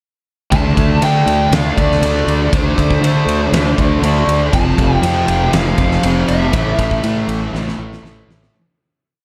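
Brooding and melancholic, this short shoegaze and dream pop rock piece in D minor moves at 120 BPM over a huge arena drum kit with a fat snare, punchy kick and bright ride cymbal in a half big groove, driving eighth-note fuzz bass, and an up-front, double-tracked fuzz guitar strumming chords with whammy-bar dips through lush chorus, while a lead guitar through a small cranked amp picks motif-based call phrases with tape echo, all in a dark production that fades out from 6.5 seconds as a drum fill closes at 8.5 seconds.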